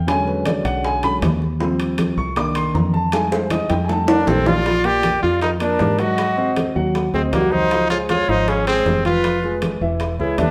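This lively, sunny Afro-Cuban jazz excerpt at 157 BPM in a straight 4/4 opens with a dark, long-sustaining baby grand piano up front, carrying a solo passage over a punchy, foam-muted fingered electric bass, with congas, bongos and timbales joining at 0.1 seconds. The percussion sits behind the piano: low-tuned, ringing congas and tight, high-tuned bongos struck with hard hands stay in the background, while the metal-shelled timbales sound close and dry, and a drum fill runs from 3.1 to 4.7 seconds. At 4.1 seconds a mellow, forceful trumpet enters up front with scooped notes and a smooth top, leading the melody in a jazz solo style. A breathy concert flute with a straight tone and soft attack enters at the same moment, tracing a second line in the background. The chords move from E13 through Cm9 and Fm7 into a passage built on Bb6, Ab7, Dbmaj7 and Fdim before landing on E7. The band plays live in one room, bathed in a lush large-studio reverb with a faint mains hum beneath.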